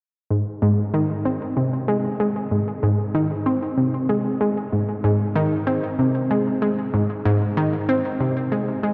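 A lone analog pluck synth opens at 0.3 s and carries this brief ambient excerpt by itself until 8.9 s. Its sound is round and bright, built on a detuned sawtooth with a fast attack, a decaying tail and a filter sweep, and it sits up front in the mix. Chorus and delay add shimmer and trailing repeats to the pluck as it moves between Ab2 and C4. A wet cathedral reverb with a five-second tail places the synth in a vast, echoing space. The mood is expansive and cosmic, with a straight feel in 4/4.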